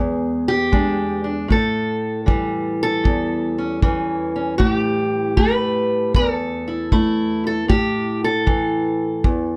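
The fingerpicked steel-string acoustic guitar opens alone, a dark, boxy parlour tone placed up front as it carries the melody across a range of E2 to B4. At 0.7 s a tight kick drum joins, played with brushes and heard with a natural small-room character. This is acoustic country blues with a gritty, swaggering mood, set at 78 BPM in 4/4 with a swung eighth-note feel. The harmony sits on E7 before moving to A7 with the third omitted at 1.5 s. A moderate booth ambience with a short decay keeps the sound close and intimate across this brief excerpt, cut from a longer piece, which ends at 9.6 s.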